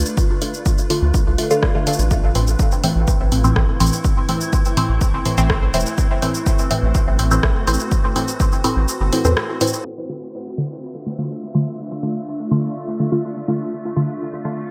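Hypnotic and meditative, this dub techno excerpt moves on a straight 4/4 pulse beneath a haze of filtered chords. Muted, detuned chord stabs sit up front, their sawtooth edge colored by phaser and trailing dub echo, while a cloudy granular pad breathes behind them with slow attacks, analog chorus and a sidechain pump. A round, deep analog bass with a slightly nasal, tube-saturated tone anchors the low end, and a faint, breathy wind-like noise texture drifts in the background under its own reverb. An up-front, tape-warm electronic kick drives the groove alongside a punchy analog drum machine playing cabasa, hi-hat and rim click, both re-recorded in a small room. The harmony moves from Dm to Am and back to Dm, the kick drops out at 8.9 seconds and the bass stops at 9.3 seconds, and from 9.9 seconds a filter sweep moves through the pad, stabs and noise layer in a bright, 1980s-style digital sheen with light ambience.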